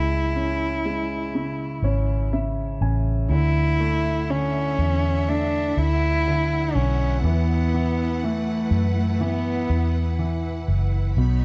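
A bowed cello sings the melody from the first moment with vibrato and portamento, its woody, nasal tone placed up front over a round, foam-muted fingered electric bass and a polished grand piano, which plays a fill between 1.3 and 3.3 seconds. At 3.3 seconds a lush, close string section enters with sustained chords as the harmony moves from C#m to Dadd9 and then Esus2, lending this slow, longing pop excerpt an emotional lift. A small room ambience and a dark, warm production shape the overall sound.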